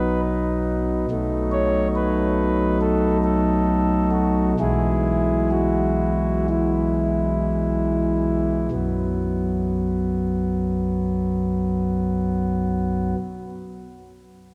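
Bathed in a wet church reverb with a 3.8-second decay, this short cut from a longer classical chorale-style piece in B major features a solo chamber organ on a smooth principal stop with a touch of chiff, placed up front and moving reverently and majestically in rubato 4/4 at 51-71 BPM, slowing through to 8.7 seconds as the harmony passes from B through B7 and E over B before settling on a bare B5.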